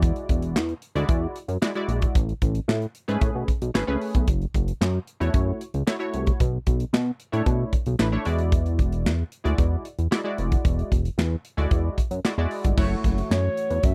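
Slick and late-night, this early-eighties boogie funk excerpt rides a punchy modern studio drum kit with handclaps and bright cymbals, a glossy chorused synth bass and a warbling, detuned polysynth comp through E9, Amaj9 and Bm11 changes, before a dark, shimmering pulse-width pad slips in at 12.8 seconds and a smooth portamento lead with vibrato enters at 13.3 seconds, all in a dry, close studio sound.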